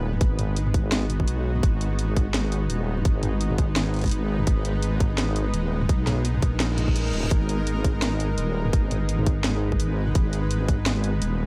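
Half-time drum and bass at 169 BPM in G# minor, this dark, spacious excerpt rests on a single G# minor chord, with a deep, wobbling sawtooth-and-sine bass sitting up front under a tense, nasal, string-like drone that breathes with sidechain pumping and reverb, while a tight electronic kick and a cracking snare with hi-hat and toms drive the swung groove, a reverse cymbal enters at 6.7 seconds, and the whole sits in a dry, gritty digital ambience.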